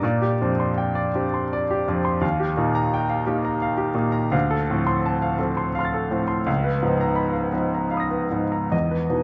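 Wistful and hazy, this short cut from a longer impressionist solo piano piece drifts in rubato 3/4 at roughly 74-88 BPM. A clear grand piano sits up front across the full 9.2 seconds, ranging from C#2 to A#6, its long sustain and audible action noise giving an intimate, polished presence within a moderate concert hall reverb. The harmony moves through colourful extended chords, from Bb69 through Ebadd9 and Dm7 to a C#13 at 6.5 seconds.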